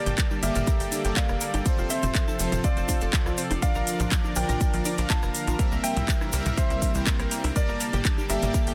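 A grand piano melody, a breathy chorused pad and smooth detuned supersaw stabs open this dreamy, emotional progressive house excerpt at 0.0 seconds, soon joined by a round, bright analog pluck arpeggio, a tight, driving sawtooth sequencer bass, a house kit of handclaps, metallic hi-hats and rim clicks, a grainy egg shaker, tape-softened electronic toms and congas and a punchy, up-front electronic kick at 0.2 seconds, with sidechain pumping on the piano, pad, supersaw, pluck, bass, toms and congas, tape echo on the piano, supersaw and pluck, and light reverb over a dense, heavily limited master.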